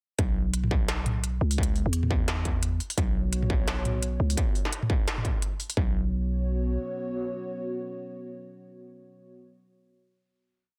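A growling, buzzy 808-style bass with long gliding notes anchors this tense, spacious half-time drum and bass piece at 172 BPM, sitting up front over a distorted electronic kick and a sparse industrial kit of clanging snare, smooth hats and low tom, both tape-warm and re-recorded in a large room. From 3.2 seconds a dark, detuned analog pad of square and sawtooth waves joins with chorus and sidechain pumping over a Bsus2 harmony. The drums stop at 5.8 seconds, and the pad's long release carries the final chord to 9.3 seconds, all within a dense, heavily limited master with little reverb.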